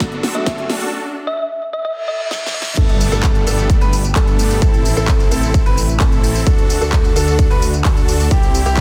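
Triumphant and anthemic, this festival progressive house excerpt in a straight 4/4 pulse opens with a build-up, where a punchy, up-front electronic kick and a big-room kit with a huge snare, crisp hats, handclaps, tambourine and crash cymbal carry drum fills under a filter sweep on huge, detuned supersaw chords. A soft, boxy felt-muted upright piano sits in the background for the first 0.9 seconds, while a very quiet, bright unison pad holds sustained chords throughout and a round, tine-like synth pluck with a warbling, vintage character plays a gentle melody. A riser, reverse cymbal and impact effects rise out of the background to set up the drop at 2.8 seconds. There a clear grand piano with long sustain spins arpeggios and a thick, mellow detuned saw bass enters, both pumping with sidechain alongside the supersaws as the harmony moves through Gadd9, Am and D. The dense, heavily limited master keeps the tape-tinged drums and full-bodied synths forceful under light reverb.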